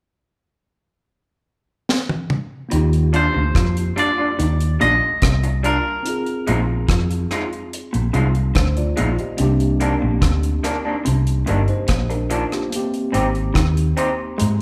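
Romantic and smooth, this lovers rock reggae excerpt moves at an unhurried, straight four-beat pace in a band-in-one-room sound with a moderate studio reverb. The deep reggae drum kit arrives first with a fill at 1.9 seconds: it is acoustic, dry and up front, with a high-tuned snare, a tight kick, rim clicks, hi-hat and toms, all touched with slapback echo. At 2.7 seconds the bass, electric piano and riff guitar enter over chords of Ebmaj9, Bb7sus4, Cm9 and Abmaj7. A dark, round, punchy muted fingered bass sits up front, and a mellow, worn tine electric piano, slightly out of tune, supplies accompaniment and a closing fill. Two picked electric guitars through a small old amp sound slightly broken-up, lo-fi and compressed: one plays a low riff with spring reverb and slapback echo, and the other adds stabs from 3.1 seconds. A bright, clean, twangy electric guitar carries the up-front melody from 3.2 until 7.3 seconds.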